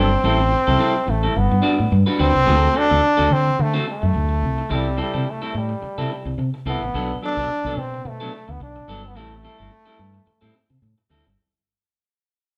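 A lightly swung sixteenth-note groove at 108 BPM in 4/4 drives this glamorous disco cut, set in A dorian and taken from a longer piece. A bright, punchy trombone carries the melody up front with light vibrato and a pop-style delivery, playing as the solo voice until 10.8 seconds. Beneath it, a dark, round fingered electric bass sits direct and amped in the foreground, while a clean, picked semi-hollow electric guitar adds hollow-body accompaniment a little further back. The harmony moves from Am7 to Gmaj7, then D7, C6 and Bm7 before returning to Am7, and the whole thing fades out from 2.5 seconds onward. The band sounds like it is playing live together in one large studio, with a moderate reverb giving the room some air.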